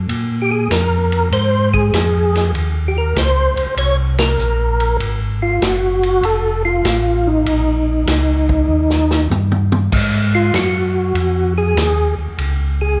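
A moderate recital-hall reverb, lasting about 1.4 s, gives this short soul jazz organ trio excerpt a churchy, roomy glow and a bluesy, greasy mood. At a swung 98 BPM in 4/4, centred on Ab mixolydian, a mellow tonewheel organ carries the bass line from F1 to Bb2, round and clean with audible key click and a slow rotary speaker. Sitting mid-forward, a vintage acoustic drum kit plays crash, hi-hat, ride, snare, kick and toms, with dusky cymbals, a medium-tuned snare, a punchy kick and a rolled-off top. Up front, a second tonewheel organ takes the melody between Eb4 and Db5, its dark, percussive tone shaped by third harmonic percussion, chorus vibrato and slow rotary. The harmony moves through Bb5, Eb5, Gbsus2, F and Eb7, and the band hits an accent at 4.1 s. A drum fill then leads into an organ solo at 9.9 s over Ab5 and a rootless Bbm7.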